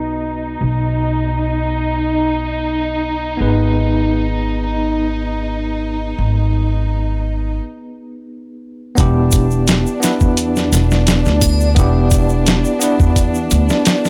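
A dry, gritty small-room recording, dulled by a low-pass filter, frames this smoky, cinematic trip hop fragment at 86 BPM in 4/4. A bright, bell-like tine electric piano with tremolo and tape echo, a chamber violin section holding soft-attack sul tasto chords with light vibrato, and a woody, dark pizzicato upright bass move from B to G#m before a break at 7.6 seconds. At 9.0 seconds, over Em7, a compressed, thumpy sampler-style drum kit arrives up front with tube shaker and triangle.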